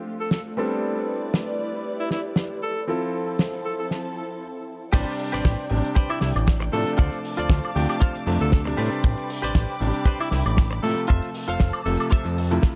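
A clear grand piano and a dark, woody string section open this cosmic, sleek nu-disco excerpt, both pumping with the sidechain, the piano's accompaniment trailing tape echo and the bowed ensemble holding lush, sustained chords with vibrato as a filter sweep moves through them. A solo tenor saxophone with light vibrato soon carries a pop-style melody through its own tape echo, while a damped 70s drum kit with dark cymbals and a fat snare adds hi-hat, shaker, woodblock and crash in a lightly swung sixteenth feel, and it too passes through a filter sweep. The drop arrives at 4.9 seconds, when a tight, dry kick with a rolled-off top lands up front beside a thick, saturated analog bass whose detuned sawtooth and square tones have a fast-attack filter pluck and pump with the sidechain. At the same moment a bright, twangy electric guitar, recorded direct and compressed, picks a riff coated in lush chorus and tape echo. 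The whole mix sits in a small room with light reverb, with the kick and bass the most prominent parts.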